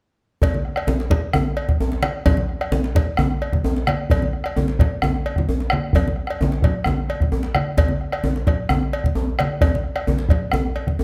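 Close, detailed microphones and light reverb give this short fragment of a West African drum ensemble a crisp, present sound. The mood is festive and powerful, moving at 130 BPM in a straight 4/4 feel. The round bombo sits up front in a small room. Alongside it, a deep djembe with metal rattles and low-tuned, ringing congas are both played with hard hands. A metallic cowbell rings out with a live-room sheen. All four instruments play together from 0.4 seconds until the cut near 11.0 seconds.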